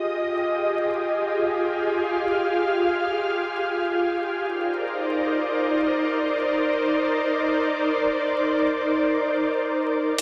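This atmospheric, dark drum and bass excerpt in the jungle style opens in free time with an ethereal, airy pad holding sustained chords that move from Fm9 to Cm9 at 4.4 seconds, its detuned, warbling vintage tone softened by ensemble chorus and built-in reverb, with a slow attack and a long release. At 10.2 seconds a gritty, compressed electronic hi-hat arrives, sampler-style and up front in a small room. The whole sits in a lush hall with dense, heavily limited mastering and a layer of vinyl crackle.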